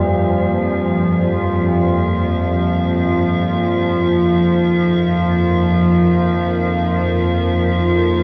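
Cavernous and desolate, this dark ambient drone in F minor drifts in free time, anchored by an up-front, tense, string-like bowed drone with a wave-folded sawtooth edge, vibrato and its own reverb, beside an eerie, warbling metallic drone whose inharmonic FM tone is coloured by chorus, phaser and shimmer reverb. Behind them, an evolving, full-bodied pad sustains detuned chords with a sub octave and filter swell, while old church bells ring clangorous bronze arpeggios through a diffuse delay until 7.3 seconds. The production is dark and heavily reverberant, with an 8.8-second decay, in this fragment cut from a longer piece.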